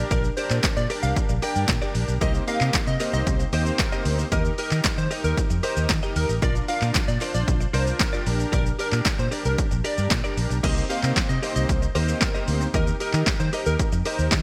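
Bright, 1980s-style digital production with light reverb and digital ambience frames this energetic, driving dance-pop excerpt in C minor, moving at 114 BPM in a straight 4/4. A punchy analog drum machine sits up front, its kick and snare carrying the weight of a large room, with crash cymbal, handclaps, hi-hat and shaker filling out the beat. Beside it, a dark, round, foam-muted electric bass with an amped vintage tone pumps with the sidechain. A fat, detuned sawtooth-and-square polysynth with a sub octave holds sustained chords, also pumping with the sidechain, while a catchy, plucky unison lead layered from square, sine, triangle and noise carries the melody through analog chorus and a filter sweep. Further back, a clean, compressed, direct-recorded electric guitar picks a riff through its own chorus, and a crisp, saturated group handclap adds a very quiet human touch from 0.6 to 10.2 seconds over a cycle of Gm/Bb, Cm7, Eb and Bb.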